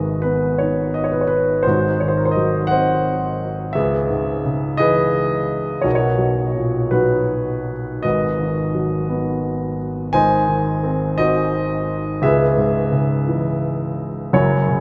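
A warm, up-front grand piano plays alone for the full 14.8 seconds of this reflective, wistful classical fragment, moving with lyrical rubato in 6/8 through chords such as G#m7, C#m9 and Bmaj7 across a span from F#1 to G#5, every note hanging in the long wash of a vast, echoing cathedral reverb.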